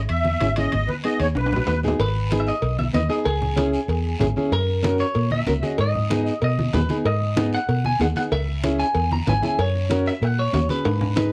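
A passionate, danceable cumbia in G# minor at 190 BPM, cut from a longer piece, where a round, punchy muted electric bass and a full-bodied fingerpicked nylon-string guitar sit up front over ringing low-tuned congas in the background, metal-shell timbales and cowbell, and a raspy guiro. A reedy, shimmering musette accordion states the melody only until 1.8 seconds, a drum fill leads into the next section, and at 2.0 seconds a twangy, compressed clean electric guitar takes a bright picked solo through the end. Moderate studio reverb and the warbling pitch drift of worn cassette tape give the whole a faded, vintage cast.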